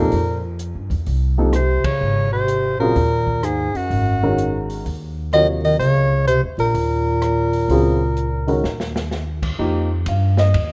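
Modal jazz with a searching, open swing feel, where an up-front soprano saxophone carries the melody over a mellow, close-miked bass clarinet second line with light vibrato and scooped notes, a natural-sounding baby grand piano comps through F7sus4 and Ab13sus4 chords, a woody, growly pizzicato upright bass sits forward, and a dark, rolled-off drum kit with a boomy kick marks a band accent at 1.8 seconds and plays a fill just before the saxophone and bass clarinet stop at 9.1 seconds, heard in a rough home demo mix with light small-room reverb.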